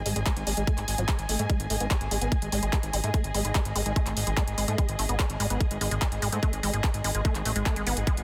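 A fat, detuned sawtooth bass sits up front from the first moment, alongside a dark, veiled string section playing con sordino with vibrato and sidechain pumping. This alien, hypnotic psychedelic trance excerpt in straight 4/4 quickly fills in with a squelchy, resonant acid bass riff that carries a filter sweep, chorus, cassette tape colouring, pumping and dub echo. An overdriven drum kit with bright hi-hats and handclaps arrives almost immediately, and a tight, overdriven electronic kick lands up front from 0.3 seconds. A very quiet electronic swell enters at 7.4 seconds. At 8.2 seconds a faint, bubbling sawtooth texture with random filter steps and built-in reverb appears just as the clip cuts off. Light digital ambience surrounds a dense, heavily limited modern master.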